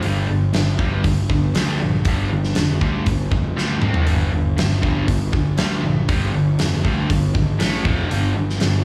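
Hard rock at 119 BPM in 4/4 with a straight, menacing and aggressive feel, heard as a short cut from a longer piece played live through a club PA with light reverb. Two overdriven, picked electric guitars grind out the riff in the background, one bright with slapback echo and the other sludgy, over an up-front fuzz bass that growls low and a big acoustic kit with a fat snare, punchy kick and rolled-off top. The power chords move from G5 to C5 and back, later passing through A5 and F5, and a drum fill breaks in at 3.6 seconds.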